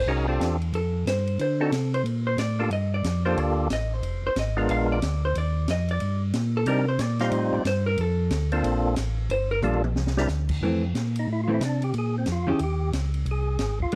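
Soul jazz organ trio swinging briskly at 182 BPM in F major, where a clean, dark hollow-body electric guitar takes a compressed, picked solo until 10.6 s over a round, mellow tonewheel organ bass line with audible key click and slow rotary speaker. An acoustic drum kit with a high-tuned snare, boomy kick and dark cymbals plays a fill at 9.6 s before a fat, lightly overdriven percussive organ with vibrato and slow rotary takes over the solo at 10.6 s, all caught in a dry, close, soulful 1970s-style small-room sound.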